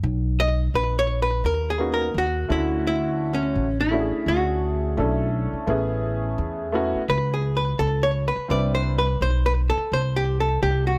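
Cool and relaxed, this short cut from a longer jazz-hop track rides a swung hip hop groove, anchored by a woody, thumpy upright bass with dark gut-string tone sitting up front from the first second. A clean, compressed hollow-body archtop guitar takes the melody as a solo from 0.4 seconds, its picked notes carried by a slapback echo. A slightly detuned vintage upright piano adds smooth accompaniment between 1.8 and 9.0 seconds over major-seventh and ninth chords, all set in a studio ambience.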